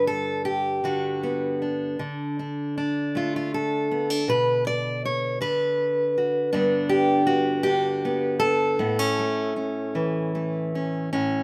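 A fingerpicked steel-string acoustic guitar with bright, fresh strings and audible finger squeak plays solo and up front in this peaceful, nostalgic folk excerpt, moving freely in a rubato 3/4 at about 79 BPM in A mixolydian, tuned slightly low to A4 = 437 Hz, through G, D5, Bm, G and A over roughly 11.4 seconds, in light reverb that suggests an auditorium.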